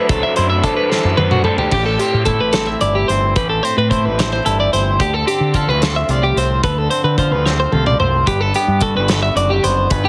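Intricate and playful, this math rock and midwest emo excerpt in 6/8 opens with a lo-fi, double-tracked overdriven garage guitar riff that drops out at 1.7 s. Meanwhile an up-front twelve-string electric guitar spins clean, compressed arpeggios over a bright, twangy, scooped electric guitar accompaniment, both bathed in plate reverb. A growling, punchy fingered bass with overdrive anchors the harmony from D9 through Am7, Dm7 and Gmaj7, and a loose indie drum kit with dark cymbals, a rolled-off top and a pumping room sound adds fills at 0.9 s and 7.5 s, all within a light reverb and a heavily compressed radio-style sound.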